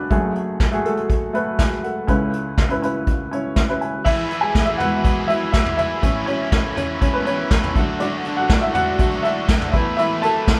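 A band playing live in one room, wrapped in a moderate large-studio reverb, gives this hopeful, warm piano-driven pop excerpt an open, natural feel. A woody, intimate upright piano with audible action noise sits up front beside a vintage brushed drum kit with a punchy kick and rolled-off top. After a piano fill at 3.3 seconds, a bright, crunchy, double-tracked overdriven electric guitar enters with a picked riff at 4.0 seconds, and the piano takes a solo from 4.1 seconds over chords moving from E through Aadd9 and D to Esus4.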